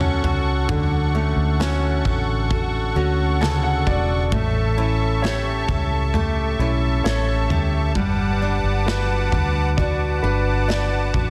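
A dark, foam-muted fingered electric bass sits up front with a round, punchy tone, anchoring this tender, hopeful pop ballad in D major at a slow 66 BPM in straight 4/4. Above it, a bright concert grand piano plays brilliant, polished accompaniment with a deep low end and short sustain, stepping forward with a fill from 3.0 to 4.3 seconds. A picked dreadnought steel-string acoustic guitar adds full-bodied arpeggios, while a reedy musette accordion holds shimmering sustained chords in its upper register. A modern studio drum kit of kick, snare and toms stays in the background, its tight kick and medium-tuned snare given a rolled-off top. The harmony moves from Dmaj7 to A7 and then Gmaj7 across this short cut from a longer piece, which carries light studio reverb and a dense, heavily limited modern master.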